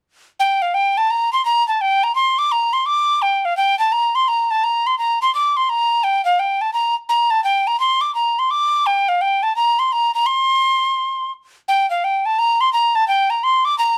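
Spirited, dark and lively, this short Celtic folk excerpt features a solo wooden whistle at a brisk 170 BPM in 4/4 with a swung eighth-note feel, playing from 0.4 to 14.0 seconds. The whistle sits up front with an airy, woody tone, a crisp chiffy attack, lifted highs and expressive vibrato. Light reverb and a dark, warm production frame the melody as it moves through a repeated section, the repeat beginning at 11.7 seconds.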